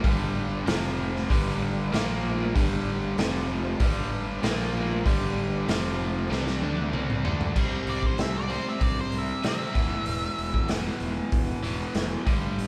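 A straight 4/4 groove at 96 BPM drives this raunchy, gritty blues rock and southern rock excerpt in G mixolydian, with a punchy, saturated garage drum kit up front, a growly fuzz bass and a double-tracked, bright overdriven guitar riff moving between G, F5 and Bb5 chords. A very quiet, thick tonewheel organ with fast rotary speaker holds sustained chords until a drum fill closes the first section at 7.6 seconds. The music then shifts to C5 and E5 as a dark octave-fuzz lead guitar plays a short melody from 7.9 to 10.7 seconds, all of it captured as a band playing live in one room with moderate reverb.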